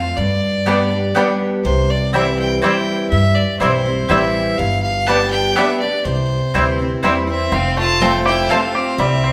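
A close, earthy bowed fiddle leads this rustic, joyful bluegrass excerpt in 3/4, riding over a full-bodied picked dreadnought guitar and a thumpy gut-string pizzicato upright bass, with a twangy fingerpicked banjo melody and double-string mandolin stabs joining at 0.7 s, a distant second fiddle line entering at 7.3 s, and the band playing live in one room under a wet, large studio reverb.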